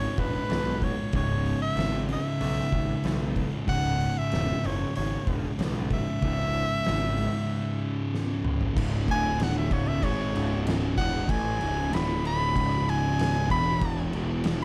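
A straight 4/4 pulse at 94 BPM drives this brooding, sludgy stoner and doom metal passage in C# minor, cut from a longer piece. Two thick fuzz guitars churn out a dark, distorted picked riff from the low register, sitting in the background beneath a growly, overdriven electric bass that is placed up front. An oversized low-tuned drum kit enters at 0.2 seconds with a fat snare, punchy kick, toms, hi-hat and crash cymbal, its saturated, gritty tone shaped by a bright stone room and a rolled-off top. Over this heaviness a bright soprano saxophone carries the melody, close-miked with light vibrato and a jazz-style phrasing, its slapback echo adding a ghostly doubling. After a drum fill at 8.1 seconds, the saxophone takes a solo from 8.8 seconds as the harmony shifts among C#5, D5 and E5 power chords around the home C# minor. Light reverb and a dark, warm production give the whole a murky, smoldering weight.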